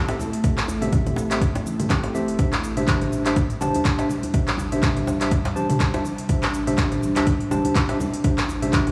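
Afro house at 123 BPM in 4/4, this short excerpt has a driving, warm mood, with a 16th-note swing and tuning set a touch below standard pitch. An ethereal, airy pad sits in the background holding sustained chords from Am7 to Cadd9, its detuned sawtooth tone softened by ensemble chorus, built-in reverb and a slow attack with a long release, all pumping under the sidechain. A clean tine electric piano plays stabs through a combo amp, shimmering with medium tremolo and trailing dub echo while also pumping under the sidechain. The deep, layered electronic kick enters at 0.4 seconds alongside a round sine sub bass, while a deep house kit adds smooth hats, cabasa, handclaps and toms. Hand percussion fills out the groove: a medium-tuned djembe played with soft hands, close and dry, and very quiet low-tuned congas with a thick, damped skin in a live room. The whole mix carries a light reverb, sounding as if played on a big sound system in a bare room.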